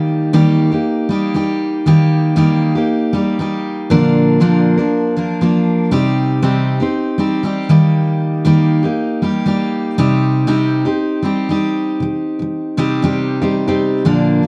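A straight 4/4 pulse at 118 BPM carries this tender, reflective pop excerpt in C minor, played entirely by a solo picked steel-string acoustic guitar that runs from Bb2 to Bb4 across its 14.5 seconds. The jumbo-bodied guitar sounds full and up front, moving through Eb, Bb and Cm before returning to Eb and settling on Cm at 10.0 seconds, with a new passage beginning at 12.0 seconds. The dry, close recording has a 1970s studio character and a modest booth ambience.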